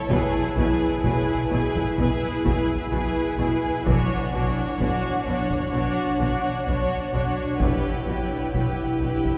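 A long, wet church reverb surrounds this short cut from a suspense film score, its tail hanging in the space of a church or concert hall. The mood is tense and eerie, moving slowly at 64 BPM in a straight 4/4 and tuned slightly low to A4 = 437 Hz, as the harmony shifts from E/B to Bmadd9 and then Em/B over a held B in the bass. Muted studio violin sections carry the melody and a second line beneath it, joined by the viola section, all bowed con sordino with a dark, veiled tone and vibrato. Cello and double bass sections hold low Bs from 0.1 to 9.1 seconds, while an ethereal pad of detuned sawtooth and triangle layers warbles in the background with ensemble chorus and its own reverb. Heavy-sticked taiko drums, compressed and saturated, sit in the background of the mix.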